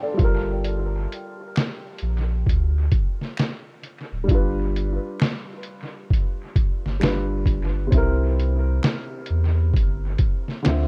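A dark, woody upright piano opens this reflective, hazy lo-fi hip hop excerpt, its mellow accompaniment trailing dub echo over a Gm9 that shifts to G7 and then C7. At 0.2 seconds a thick, saturated sub bass and a muffled, pitched-down sampler-style drum kit arrive up front at a relaxed 66 BPM with swung 16ths, the thumpy kick and fat snare also carrying dub echo. Very quiet finger snaps join at 1.6 seconds, all set in a dry, echo-heavy mix with a cassette-tape grain.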